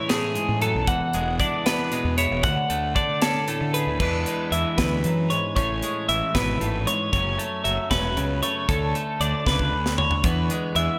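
Math rock and midwest emo in a straight 6/8 feel, this short cut from a longer piece sounds intricate and playful. Two clean, picked twelve-string electric guitars sit up front: one carries the chordal accompaniment in the lower and middle register, while the other spins bright, twangy arpeggios higher up, both with a compressed, bright tone. A fingered electric bass with a warm fuzz overdrive joins at 0.5 s. A polished, airy studio drum kit with a high-tuned snare and punchy kick drives the groove with hi-hat, crash and toms, and a drum fill arrives at 9.5 s. The harmony moves through Amaj7, E9 and Dmaj7 before shifting at 4.0 s into a passage of E7, Amaj7, F#m7, D5 and E7. A lush hall reverb gives the whole mix a big arena sound.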